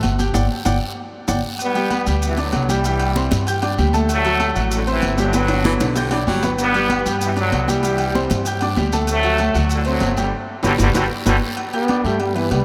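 Driving straight 4/4 salsa at 192 BPM in G major, the groove rests on thumpy, woody pizzicato upright bass up front, a bright, present upright piano comping through Gmaj7, Cadd9 and D7, and background congas, ringing agogo bells and timbales, raspy guiro and grainy maracas, with band accents and drum fills punctuating the festive, danceable feel. From 1.6 s a tight, brilliant trombone section carries the melody with soft-attack vibrato and a vintage tone, briefly joined by a scooped, close-miked baritone saxophone line around 5.5 s. At 11.7 s a punchy solo trombone with light vibrato steps forward, the whole cut washed in a vast, echoing cathedral reverb.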